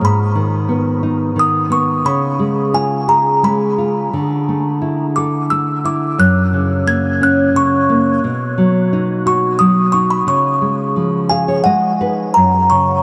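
This children's lullaby sways gently in 3/4 at 88 BPM, tender and innocent in mood, and is cut from a longer piece. A delicate, tinkling music box carries the melody high in its range, with the boxy character of a large box in a small room and a diffuse ambient delay trailing each plucked note. Beneath it, a warm, thumb-plucked classical nylon-string guitar provides acoustic accompaniment. Both parts sit up front and play throughout, and the guitar adds a fill from 11.0 to 12.4 seconds. The harmony moves through G#m, C#7, Dsus2, F#, B and C#add9 before landing on F#. A huge ambient reverb soaks the whole mix, giving it a dreamy, floating haze.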